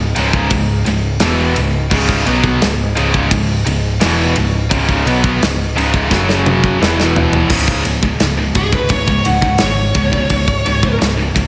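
Relentless and epic, this heavy metal excerpt pounds along at 86 BPM in C# minor, cut from a longer piece and set in a big arena sound with a moderate concert hall reverb. Three rhythm guitars drive the riff from the start: a heavy high-gain guitar with distortion, a scooped high-gain guitar carrying both distortion and slapback echo, and a double-tracked overdriven electric guitar with slapback echo that drops out at 7.5 seconds, all bright and sitting in the background. Underneath, a hollow-body short-scale electric bass adds a dark, round, punchy low end, while a tight acoustic drum kit sits up front with bright cymbals, a medium-tuned snare and a tight kick across crash, ride and toms. A drum fill over F#5 and E5 chords leads into the second section, where the harmony settles on C#5. There a dark high-gain lead guitar with distortion and slapback echo steps up front for a short solo, entering at 8.6 seconds.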